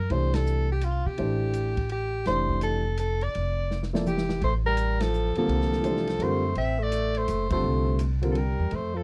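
A searching, open mood hangs over this short modal jazz excerpt, a swung waltz in 3/4 at 167 BPM, sitting in F major on a single Fmaj9 chord. A soprano saxophone carries the melody with light vibrato and scooped notes, its tone warm yet roomy and set somewhat at a distance. Pizzicato upright bass sounds woody and thumpy, while the grand piano supplies accompaniment with present, long-sustaining chords. The acoustic drum kit stays low in the balance, with dark cymbals, a medium-tuned snare and a boomy kick. It plays a fill from 3.7 to 4.4 seconds, and partway through it a breathy, whispered tenor saxophone enters at 4.1 seconds as a mellow second line. The band hits accents together at moments such as 0.3 and 5.0 seconds, all captured in a dry, close 1970s-style studio sound with light reverb.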